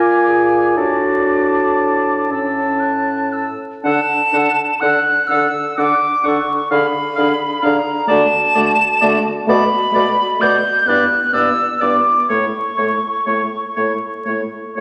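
Set in 6/8 with a free, rubato pulse, this slow romantic movement for wind quintet unfolds with a tender, warm mood, and it is cut from a longer piece. The concert flute carries the melody up front and high in its range, its pure, hollow tone shaped with vibrato and clear tonguing. Beneath it the oboe sings a second line in classical style with light vibrato, sounding both present and roomy, as if heard from a little distance. The clarinet's mellow accompaniment sits in the background, while the French horn adds a warm middle voice and the bassoon anchors the bass with a mellow tone touched by light vibrato. After a brief opening, a new section begins at 3.8 seconds, and the harmony drifts through a diminished chord before settling toward a gentle cadence at 12.3 seconds. The whole ensemble sounds through a reverberant recital hall, with vinyl crackle giving the recording an aged, intimate patina.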